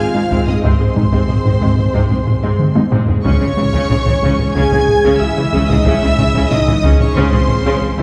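Brooding and relentless, this cinematic excerpt from a hybrid orchestral and electronic film score moves at 92 BPM in a straight 4/4, shifting from Ab to Db minor at 3.3 seconds. Lush, bowed violins carry the melody high above a second violin line, while a clear, intense viola section fills in the accompaniment and an expressive cello section and woody double basses anchor the low end very quietly. A distant, roomy French horn section holds dark sustained chords in the background alongside a deep, evolving analog pad with a slow attack and chorus. On the electronic side, a rubbery, hollow square bass plays a bouncy riff, and a woody wave-folded pluck with a fast attack and short decay traces arpeggios. A vintage, band-limited taiko ensemble struck with heavy sticks drives the piece, with a drum fill between 2.6 and 3.3 seconds, and the whole ensemble sits further back in a wet scoring-stage reverb.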